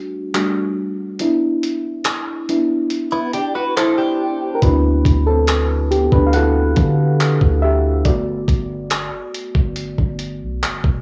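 A mellow, round FM electric piano with a chorus sheen leads this romantic, smooth contemporary R&B passage from the start, moving through lush chords such as Cmaj9 and D13 over a dusty, compressed sampler-style kit of thumpy kick, hi-hat and handclaps. A clean, direct-recorded electric guitar picks brief arpeggios through phaser and analog delay from 3.1 to 4.6 seconds, and a deep, boomy 808-style sine bass arrives at 4.6 seconds. The dry, gritty cassette-tape sound and small-room ambience give this slice of a longer piece a hazy intimacy.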